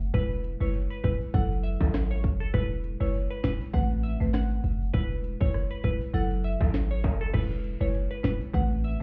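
Bouncy and sunny, this dancehall excerpt moves at 100 BPM in E major with a light swing on the sixteenths, cycling through E, F#m7 and Amadd9 chords. An overdriven island pop drum kit sits loudest, with a tight kick, sharp snare, metallic hi-hats, rim clicks and crash cymbal, while a deep, boomy 808-style bass with a fast attack and decaying tail sits up front from 0.0 seconds. A buzzing marimba struck with medium hard mallets fills in the chords with a woody, dry, mid-forward tone. Above it, a glassy wavetable pluck carries the melody in a crystalline, bright, chorused voice with a filter sweep and ring-modulated edge. Tube shaker and timbales add acoustic sparkle from a distant, large room, and the whole mix sounds as if heard muffled through a wall, with a club reverb.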